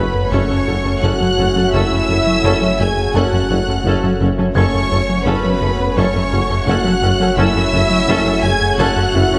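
A barely audible electronic impact sounds at the start of this brooding, futuristic excerpt from a hybrid orchestral and electronic film score, as a rubbery, hollow square-wave bass riff sits up front over deep sub bass, a very quiet tuba, and very quiet bowed cello and double bass sections holding the low end. Above them, a distant symphonic violin section carries a smooth, vibrato-laden melody, joined by a studio violin section's expressive second line with portamento, while violas provide accompaniment and a dark French horn section and a detuned, chorus-warbled vintage pad sustain the harmony. A dark, mellow baby grand piano adds faint texture, the whole blend sits in a moderate scoring-stage reverb, and the harmony shifts from F# minor to A6/F# at 7.4 s.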